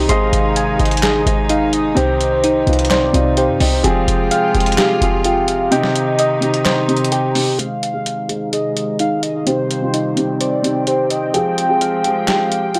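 A punchy, tight 808-style bass sits up front in this dark, eerie hip hop and trap excerpt at 128 BPM in a half-time feel and C minor, dropping out at 5.7 s while the kick is muted until 7.6 s. Around it, a mellow vintage grand piano and a reedy, bowed string section carry the Ab, Cm and Fmadd9 changes. Round electric-piano-like synth keys play arpeggios through chorus and tape echo and take on a filter sweep from 7.6 s, while a velvety sawtooth synth lead adds a second line with phaser and vibrato, over a gritty, compressed sampler-style kit of snare, hi-hat and handclaps in a dry hardware recording with digital ambience.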